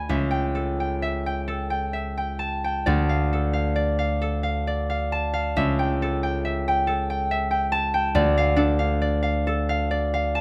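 A solo concert harp carries this short classical fragment, its ringing, fingerpicked strings sitting up front in a close, detailed recording with light reverb. The mood is wistful and gentle, moving at a slow 44 BPM in 6/8, counted in dotted quarters, with uneven beats and a free, rubato feel. Set in D minor, the harmony rocks between A7/C# and Dm, with the chord changing at 0.1, 2.9, 5.6 and 8.2 seconds. The harp spans a broad compass from C#2 up to B5, its acoustic tone warm throughout. Cut from a longer piece, the passage lasts just over ten seconds and stays within a single section.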